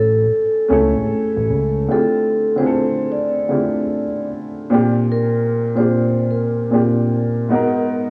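Swung sixteenths carry this nostalgic, hazy lo-fi hip hop fragment, where a ringing, metallic vibraphone with medium mallets plays the melody through a low-pass filter, cassette tape and tape echo over a dark, woody, boxy upright piano, while a fat, sawtooth analog bass sits up front until 1.9 s, all set in the intimacy of a small-room home cassette recording.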